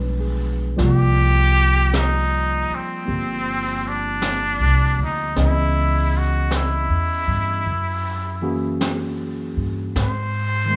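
A rough home demo mix with little reverb gives this intimate, late-night jazz ballad fragment a close, unpolished sound, with a gentle swing feel in four. A barky, bright tine electric piano and a woody, growly pizzicato upright bass open the piece, and at 0.8 seconds a nasal, breathy trumpet in a straight mute takes the melody up front with vibrato and a soft attack, while a brushed drum kit with a high-tuned snare and hi-hat sits mid-forward with a rolled-off top. The harmony moves through G7b9, C9sus4, Dbm7 and Gb9 before settling on Ab.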